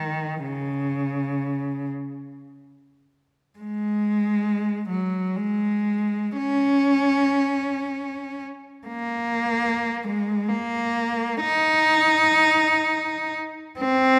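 A lone bowed cello opens this mournful, meditative classical fragment, its clear, focused tone sitting close and up front. A single player moves freely in 6/8, stretching and relaxing the pulse with expressive rubato and steady vibrato. The line stays in the instrument's middle register, between C#3 and D#4, and a new passage begins at 3.6 seconds and carries through to the end at 14.2 seconds. A moderate scoring-stage reverb with a 1.9-second tail gives the dark production a gentle sense of space, and the tuning sits at A4 = 441 Hz. Cut from a longer piece, it feels like a private reflection caught mid-thought.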